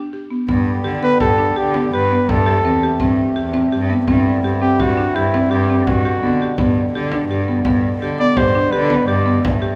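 A moderate recital-hall reverb surrounds this short passage from a longer piece of playful, hopeful contemporary chamber music in 5/4, moving through G, Am7 and Cadd9/G before returning to G. A punchy, close-miked flugelhorn carries the solo melody with warm vibrato, while a woody, buzzing marimba plays dry arpeggios up front from the very start. At 0.5 seconds a reedy, breathing pedal harmonium enters with sustained chords, a single bowed cello adds a rich, expressive bass line with vibrato and portamento, and a deep, saturated frame drum supplies compressed percussion.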